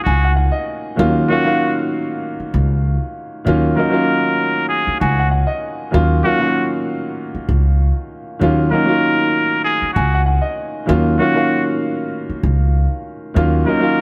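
A trumpet with a straight mute carries the melody in this gritty, dark boom-bap hip-hop excerpt, its nasal, brilliant tone shaped by vibrato, a smooth top and a touch of delay in a jazz-style solo voice. Beneath it, a clear concert grand piano supplies the accompaniment with a deep, vintage character, filtered and given a cassette-tape patina. An acoustic upright bass, plucked pizzicato on steel strings, enters at 0.1 seconds and drops out at 13.6 seconds, sounding woody and up front. The groove sits in 4/4 with a light swing on the sixteenths, and the harmony rests on a single Ebm7 chord throughout. Studio ambience frames all three instruments.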